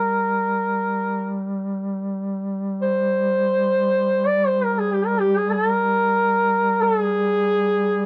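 A dry, close recording in the manner of a 1970s studio, with a small room around the players, captures this short passage cut from a longer Caucasian folk lament. A warm duduk carries the mournful, longing melody between G4 and D5 with vibrato and scooped notes, sounding distant and roomy yet up front. Beneath it, a dark duduk holds a low G3 drone throughout the 8.1 seconds, its soft attack and smooth top giving the line a gentle, sorrowful weight.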